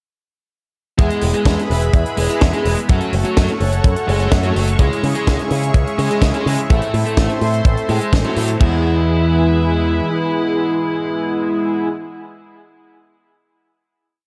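A sunny, romantic Italo disco piece at 126 BPM in E major opens at 1.0 seconds with an up-front, four-on-the-floor kick, a tight funk kit of high-tuned snare, hats and crash in gated reverb, a punchy, octave-jumping picked bass through an envelope filter, and glossy, bright polysynth stabs with a cassette-tape tint pushing syncopated held chords. A dark, distorted lead guitar carries a repeating bluesy riff in octaves with delay, while a smooth, detuned analog pad swells in with chorused sustained chords. The drums stop at 8.7 seconds, the bass follows at 10.0 seconds, and the guitar, pad and polysynth ring out a final E chord until 11.9 seconds in a light reverb.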